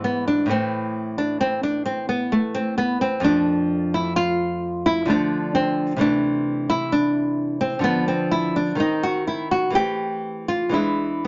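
A solo nylon-string guitar, small and up front with a fingerpicked touch and audible finger squeak, carries this short classical excerpt, a baroque-style dance in 3/4 at 65 BPM. The mood is radiant and flowing, though the beats fall unevenly and the time bends freely with rubato. The guitar ranges from F2 to G4, opening on E/G# and A5 before settling into A minor from 3.2 s. The harmony moves through F, Dm and Am/C, then colours the phrase with Dm13 and D#m6 before Am/E and a closing E7 at 10.7 s. A moderate club reverb lends the acoustic tone a gentle, rounded space, and the top end is soft, with nothing above 7.5 kHz.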